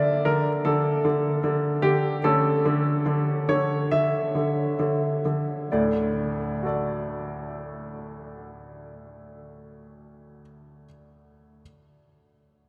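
A playful, cheerful classical-period piano sonatina excerpt in D major, taken at a rubato 64-77 BPM in 4/4, features a bright, brilliant, natural-sounding baby grand piano played solo and up front from D2 to E5, slowing down through its opening 5.7 seconds over Gmadd9/D and A/D before settling on D, all bathed in a wet cathedral reverb that places it in a vast, echoing space.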